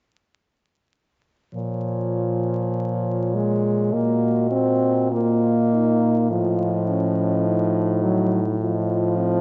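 A warm French horn carries the accompaniment up front, joined at 1.6 s by another horn on the bass line, in this yearning, elegiac excerpt of a classical horn quartet in Bb minor at a rubato 51 BPM. Above them a mellow, distant horn sings the melody from the background, and at 3.9 s a smooth-topped horn with light vibrato adds a second line as the harmony moves from Bbm through Ebm/Bb to F7/A. A dark production with vinyl crackle and moderate concert hall reverb frames the quartet.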